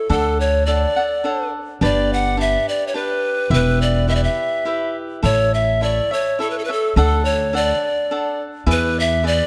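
Romantic and festive, this mariachi-flavoured Mexican folk excerpt moves in a straight 3/4 at 105 BPM, with a breathy, bright bamboo pan flute carrying the melody up front with crisp, chiffy attacks, a picked acoustic cavaquinho supplying crisp accompaniment, and a woody pizzicato upright bass anchoring the low end beneath a chord progression of D, G, Em, A and back to D before closing on E7, all set in light reverb.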